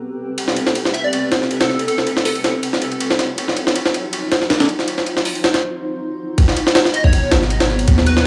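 Overdriven, gritty sampler-style jungle drums with a thumpy kick and high-tuned snare sit up front in this frenetic, nostalgic drum and bass excerpt, over a blurred, cloudy granular pad carrying Am9, D#m9 and G#m9 chords with 12-bit sampler grit, while a punchy, catchy square-wave lead with phaser, analog chorus and dub echo comes and goes, and a deep, mellow 808-style sine bass arrives at 7.1 seconds, within the drop that begins at 6.4 seconds after a break from 5.6 seconds, all in a light small-room ambience.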